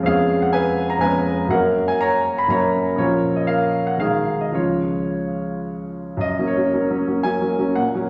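A clear concert grand sits up front in a wet recital hall, its deep bass and open tone carried on a generous reverberant bloom. This brief fragment of a romantic character piece for solo piano moves in triple metre with free, rubato phrasing, lyrical and passionate in mood. The harmony travels through a few rich chords before settling home at 6.2 seconds, where a new passage begins and runs to 8.1 seconds.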